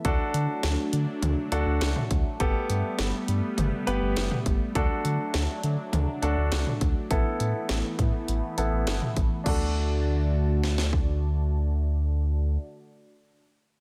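Nostalgic and bright, this synth-pop excerpt in D major moves at 102 BPM in straight 4/4, with a clear, polished baby grand piano playing accompaniment over swirling, detuned pad chords treated with phaser and chorus, a round, deep analog bass sitting up front, and a house drum kit with punchy kick, cracking snare, crash, hi-hat and toms that stops at 11.1 seconds, all in light reverb as a filter sweep runs through the opening 9.5 seconds and the chords cycle through D, Gadd9 and Asus2.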